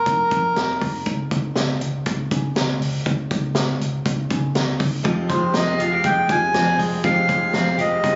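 A reedy, breathy melodica opens this restless, bittersweet jangly indie pop excerpt in F minor at 120 BPM, sounding up front through analog delay before dropping out at 0.8 seconds. A dark, round, foam-muted picked bass and a vintage kit with a punchy kick and high-tuned snare carry the straight 4/4 groove. At 5.0 seconds a twangy, slightly broken-up electric guitar plays arpeggios with harmonic tremolo over a full-bodied acoustic guitar in the background, and the melodica returns at 5.3 seconds, all heard through the dull, roomy club reverb of a phone recording.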